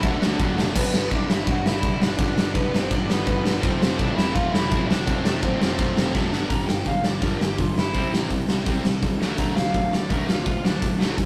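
A big rock drum kit sits up front, its punchy kick, medium-tuned snare, hi-hat and crash ringing in a bright stone room, driving this rowdy, upbeat punk rock cut from a longer piece. Over it, a raw garage guitar carries the melody with a bright, overdriven, picked tone, and from 6.5 seconds it breaks into an overdriven solo. Behind the lead, a sludgy guitar with a warm, overdriven sound and a tight, distorted guitar grind out the riffs. The tight guitar drops out after the opening moment and returns at 3.6 seconds. A fuzz-laden electric bass, picked and growly, rumbles low in the background. A drum fill at 6.1 seconds leads into the solo section, and the whole take has a rough rehearsal-room feel with tube saturation and light reverb.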